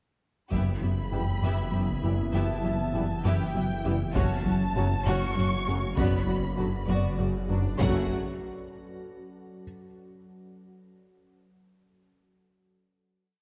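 A brooding, tense hybrid orchestral and electronic film score in 6/8 at 66 BPM in F# phrygian: a lush symphonic violin section carries the melody over a darker studio violin second line and a background viola ostinato, while very quiet cello and double bass sections sustain the low F# beneath a thick, saturated detuned saw bass and a smooth synth bass riff; big single taiko strokes land with hard sticks and a warbly, lo-fi pluck pulses in arpeggios, then a glassy FM pad, very quiet French horn and bright trombone sections enter with sustained chords at 1.1 s alongside sparse felt-muted upright piano notes through digital delay, before the theme settles onto a final F# minor chord at 7.8 s.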